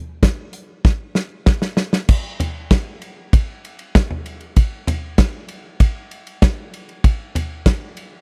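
A natural country drum kit opens at 0.2 seconds in a straight 4/4 pop groove at 97 BPM with a driving, bittersweet mood. The acoustic kit sits up front in a small room, its punchy kick and medium-tuned snare joined by hi-hat, ride, crash and toms. A drum fill runs from 0.9 to 2.1 seconds, carrying the short opening passage into the next section. From there the kit plays on until it stops at 8.1 seconds, the clip having been cut from a longer piece. The sound is dry and close, with little reverb, in the manner of a 1970s studio recording.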